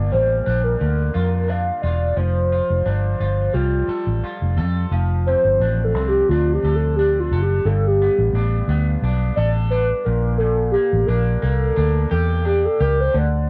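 A warbling, detuned synth lead with lush chorus and vibrato carries the melody and turns to a soft solo from 4.9 seconds in this hazy, nostalgic indie-pop and bedroom-pop fragment, over a slightly broken-up, twangy electric guitar with subtle chorus and cassette-tape pitch drift sitting low in the mix, and a dark, round, foam-muted bass up front, all caught in a home cassette recording with light reverb.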